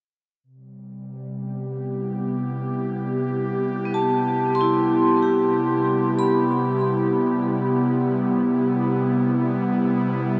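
An airy, breathy pad with a gentle warble and chorus opens at 0.8 s, holding soft sustained chords on Cmaj7 in free time and setting a serene ambient mood in C major. At 3.9 s a bright, metallic vibraphone struck with hard mallets joins with ringing arpeggios that drift through a diffuse ambient delay. The whole excerpt floats in a huge, wet reverb that lets every note hang long after it sounds.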